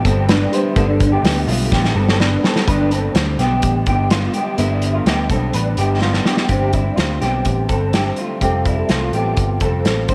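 A moderate echo-chamber reverb gives this bright, youthful slice of jangly indie pop a roomy glow, with a slightly broken-up, lo-fi electric guitar sitting up front as it spins chorused, tape-echoed arpeggios. Beneath it, a fingerpicked steel-string acoustic guitar with fresh strings adds finger squeak and a warm concert quality. A loose indie drum kit, acoustic and pumping in its small room, drives a straight four-beat feel with a tight kick, medium-tuned snare and hi-hat, adding a couple of fills along the way. A vintage muted picked electric bass, dark, round and foam-muted, joins almost at once and holds down the low end. A mellow, reedy electric piano with fast tremolo murmurs very quietly through its built-in speakers at the start, then drops out at 2.7 seconds. The harmony rests on G for most of the cut before shifting to Fadd9 at 8.4 seconds.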